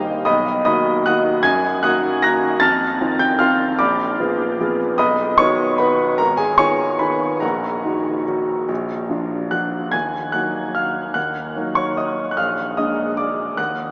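The rhythm is a waltz in 3/4, taken with a free, rubato feel at a tempo that drifts between 138 and 160 BPM. This classical excerpt, cut from a longer piece in E-flat minor, features a solo grand piano that sounds clear and intimate. The piano sits up front, with its action noise audible, and spans a broad range from Ab1 to A#6 across the full 13.9 seconds. The harmony moves through colors such as Bmaj7, F7 and Bb7b9 before settling onto Ebm at 9.9 seconds, where a second section begins and leans toward a closing Bb7. Around this natural-sounding instrument hangs a huge, wet reverb with a 7.7-second decay, placing it in a vast, echoing space, though the overall sound has the quality of a small speaker. The mood is bittersweet and nostalgic.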